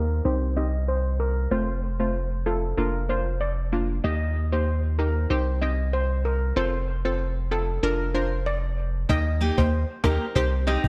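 Dancehall at 95 BPM in Eb lydian, bouncy and sunny, where a shimmering steel pan carries the melody up front over round, chorused analog plucks and a deep, punchy sub bass with a pitch-drop attack, all cycling through Cm, F, Bb/F and Eb while a filter sweep runs until 9.1 seconds. At that point a woody cajon enters softly in the background, and a picked steel-string acoustic guitar joins with arpeggios at 9.4 seconds, finger squeaks audible. The dreamy mix is soaked in plate and small-room reverb, and this is an excerpt from a longer piece.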